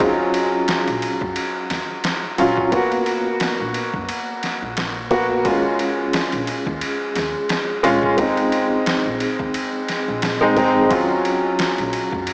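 A dreamy, reverb-soaked mix with a small-speaker sound, bathed in a wet plate reverb with a 2.9-second tail, sets a smoky, dark trip hop mood in this 12.3-second cut from a longer piece. At 88 BPM in 4/4 with a light sixteenth-note swing, a sampler-style drum kit sits up front, compressed, pitched down and gritty with overdrive, pairing a thumpy kick with a medium-tuned snare and ride cymbal. A clear upright piano carries the accompaniment, also up front, its woody, vintage tone given long sustain and colored by harmonic tremolo and tape echo. Beneath it, a pizzicato upright bass on steel strings adds a woody, warm acoustic low end, thickened by tube saturation and mixed low. All three parts play throughout, moving in Eb minor from Ebm7 through Bbm7 and a Bb9sus4 before settling back on Ebm7.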